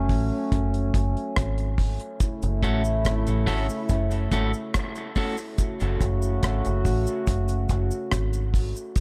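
Dub reggae at 71 BPM in F# minor with a heavy, deep mood, this echo-heavy fragment of a longer piece opens on a dark, round, foam-muted fingered electric bass up front and a dry drum kit with a tight kick, hi-hat and rim click, under a mellow, punchy trombone section soaked in dub echo; a cabasa joins softly in the background at 2.2 seconds, and a slightly broken-up, picked electric guitar with its own dub echo adds accompaniment from 2.6 to 5.4 seconds, all within light reverb and a small room ambience.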